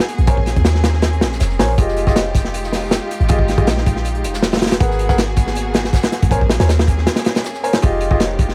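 A crunchy breakbeat drives this dark, atmospheric drum and bass and jungle cut at 159 BPM in straight 4/4, its punchy kick, medium-tuned snare and hi-hat sounding saturated and gritty with a rolled-off top, sitting up front from the first moment. Behind it, a second acoustic kit of hi-hat and fat snare, filtered to thin its hats, snare and room, plays in the background from 0.1 to 7.7 seconds. A deep, boomy 808-style bass with a sine core, a noise layer and a fast, decaying attack enters at 0.2 seconds, moving between F1 and Eb2 in F minor. Bowed chamber strings hold smooth, even sustained chords with vibrato, close and warm, while a polished grand piano places present stabs through a dub echo over a minor-ninth progression of Bbm9, Fm9 and Abm9. The passage is the drop of a longer piece, moving into a brief break at 7.1 seconds before returning to Fm9, all set in a studio reverb.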